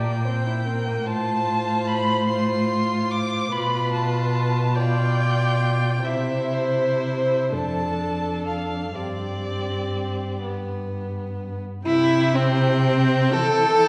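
A tender, warm slow romantic movement for string quartet in C major unfolds in a rubato 6/8 at around 39-49 BPM, with all four bowed players sounding together from the start. The first violin carries the melody with a focused, vibrato-rich tone, while the second violin's even, rich line and the viola's dark, woody accompaniment fill the middle, above a close, up-front cello whose soft attack, portamento and expressive vibrato anchor the bass. Heard from further back in a reverberant concert hall, this cut from a longer piece moves through gentle harmonies before settling on C at 11.9 seconds.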